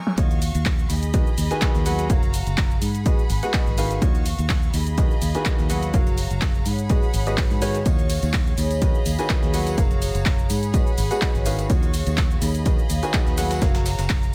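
A clear, earthy violin section with light vibrato opens on sustained chords, joined within a fraction of a second by a punchy, overdriven analog drum machine, a layered up-front kick, a faint gritty breakbeat kit, a round foam-muted fingered bass and a woody upright piano riff with dub echo, with the violins, bass and piano pumping to the kick in a bittersweet, soulful piano house groove at 125 BPM with a light 16th-note swing. The harmony cycles through Ebm9, B6/D#, Gbmaj7 and Abm7, while a warbling, lo-fi pad with chorus and phaser drifts in at 5.2 seconds. A very quiet tambourine joins at 7.9 seconds, all within a digital ambience.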